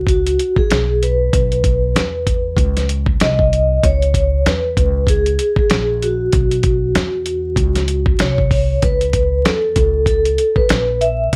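Jazz-hop with a smoky, cool mood at 96 BPM in 4/4, its 16ths swung, cut from a longer piece, where a mellow, ringing vibraphone played with soft mallets carries a solo across the full 11.4 seconds, its fast motor vibrato shimmering in a boxy small room. Up front beside it, a woody pizzicato upright bass sits low and thumpy, while a dusty, compressed, gritty sampler-style drum kit enters at 0.1 seconds with a thumpy kick, medium-tuned snare and hi-hat. Light reverb and vinyl crackle haze the sound as the harmony drifts from Bsus2 through Cm and A#m7 to a closing A#mmaj7.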